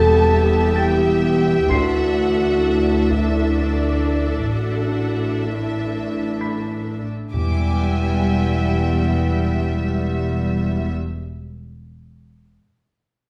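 Opening on a soft, sul tasto violin melody over a darker background second violin line, floating violas, woody double basses and smooth cellos, this mysterious, eerie cinematic suspense fragment in triple time also carries mellow French horns and roomy trombones holding sustained chords and a brilliant baby grand piano glinting high above until 7.3 s, with very quiet, far-off taiko strikes from 1.7 s to 3.5 s, before hard-mallet timpani and an intimate high violin texture enter at 7.3 s, the whole heard from further back in a wet stone room.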